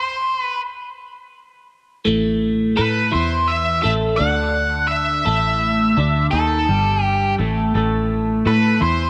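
A straight 4/4 pulse underpins this dark, trippy rock excerpt, cut from a longer piece. An octave-fuzz lead guitar opens alone at 0.0 s, its picked, distorted melody sitting up front and trailing tape echo. A double-tracked twelve-string electric guitar enters at 2.0 s with a riff, clean and compressed, its tone colored by a phaser. Fingered electric bass joins at 2.1 s as the harmony settles on A5, its foam-muted sound round, direct and amped. A moderate spring reverb surrounds the recording.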